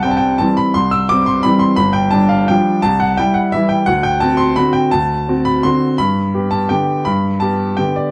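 A clear baby grand piano opens this short solo passage from a longer classical piece, a waltz in G major at 171 BPM in 3/4. The mood is elegant and playful, with rubato that makes the beats feel uneven and lets the dance lean and pull. The piano covers a broad span from G1 up to E6, its natural tone carrying a long sustain and sitting up front in the sound. The harmony moves from C through G and C to D7 at 3.9 seconds before settling on G at 6.0 seconds. A moderate studio reverb gives the instrument a sense of room, while the dark, warm production carries faint mains hum and traces of lossy compression artefacts.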